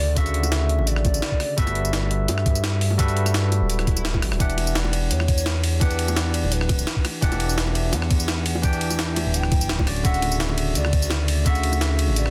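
Melancholic and rolling, this liquid drum and bass excerpt moves at 170 BPM in E dorian with a light swing, drifting over Dmaj9, Gmaj13 and Em9 chords as a smooth, gliding sawtooth-and-square bass sits up front beneath a bright, barky tine electric piano roughened by vintage 12-bit sampler grit and tape echo. A hollow, woody clarinet-like synth lead with vibrato, subtle chorus and digital delay carries the melody from the background. From 0.2 seconds a gritty, pitched-up breakbeat kit with a high-tuned snare, hi-hat, ride, rim click and tambourine joins a thumpy compressed electronic kick and soft, low-tuned bongos, while a very quiet electronic swell enters at 3.8 seconds within a dense, heavily limited modern master.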